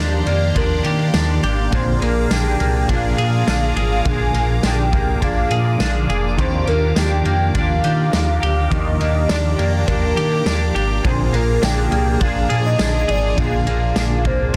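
A velvety, smooth synth lead with chorus, tremolo and delay carries the melody in this ethereal, dreamy dream pop excerpt at 103 BPM in Eb major, over two clean semi-hollow electric guitars (one bright and picked with harmonic tremolo, the other fingered, playing arpeggios through lush chorus and delay), a swirling, detuned phased analog pad, a deep, full sine sub bass with octave, and, from 0.3 s, a very quiet twinkling granular shimmer and a vintage drum kit with a punchy kick, dark cymbals and tambourine in a pumping small room, all cycling between Ebmaj9 and Bb7 in a dense, heavily limited modern master.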